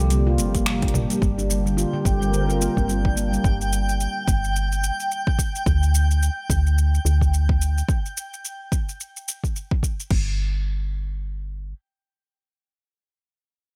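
A lightly reverberant, earthy mix carries this organic downtempo piece at 108 BPM in G minor, with swung sixteenths giving it a relaxed sway. A dark, chorused analog pad with sidechain pumping and a ringing, mellow handpan playing arpeggios through a low-pass filter and digital delay share the opening until 3.4 s. Beneath them sit a round, woody FM bass up front and an overdriven deep house kit of metallic hats, finger snaps, shaker, toms and crash, joined at 0.5 s by a deep, overdriven electronic kick, while a twinkling granular shimmer enters high above at 1.9 s as the harmony moves from G minor to D suspended fourth before the chords fall away.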